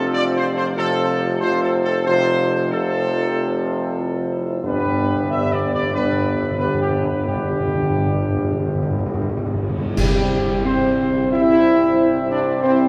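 In a straight 4/4 pulse, this majestic, triumphant classical fanfare sets a dark, distant trumpet section's melody up front over sustained chords from mellow French horns with light vibrato and clear trombones in the background, with a vintage-sounding warm tuba carrying the bass, timpani on medium mallets entering at 4.6 seconds for a fill, and a cymbal swell, clash cymbals and concert bass drum joining at 7.3 seconds ahead of a band accent at 10.0 seconds, the whole fanfare bathed in a wet cathedral reverb.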